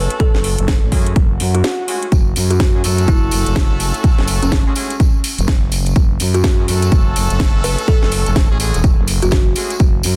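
A growling, thick FM bass with tube saturation and sidechain pumping sits up front in this swaggering, bouncy bass house excerpt at 125 BPM in F# minor, joined by a punchy electronic kick and a house kit of cracking snare and metallic hats, both bathed in studio reverb. A woody, hollow kalimba carries the melody with 12-bit sampler grit and dub echo in the background, while a brilliant, tight horn section with vibrato and octave doubling adds pumping jazz-style stabs. An electronic swell and a brief break arrive around 1.3 to 2.1 seconds, after which a jingly tambourine enters, all under a dense, heavily limited modern master.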